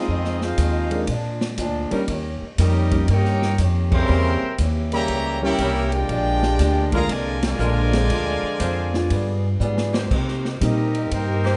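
Energetic and brassy, this big band swing excerpt moves at 120 BPM in Bb major, with a tight trumpet section carrying the melody from a roomy distance over a soft-attacked trombone section's second line, and an edgy, close-miked saxophone section joining at 1.9 s with sustained chords in the background. A woody pizzicato upright bass sits up front, while a boxy picked archtop guitar and a dark, intimate baby grand piano with audible action noise fill in the accompaniment. A swinging drum kit with a punchy kick and ride cymbal drives the band through accents at 3.8 and 7.3 s and a fill at 9.6 s, all in a moderate large studio reverb, with the top end rolled off above 10.4 kHz.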